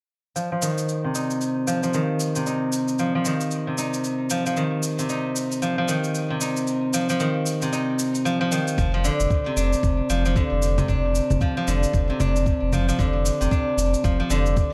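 A gently swung groove of gritty, sampler-style shaker and congas opens this hypnotic, meditative organic downtempo excerpt at 0.4 seconds alongside a steel-string zither, joined at 8.8 seconds by a thumpy, compressed electronic kick drum and a deep, round sine sub bass with a sidechain pumping effect. Up front, the silvery, ringing zither, plucked with fingerpicks, spins arpeggios through a low-pass filter sweep and delay, with the harmony moving to Dm7/F once the low end arrives. The percussion carries the character of a large room, while light reverb softens the whole mix.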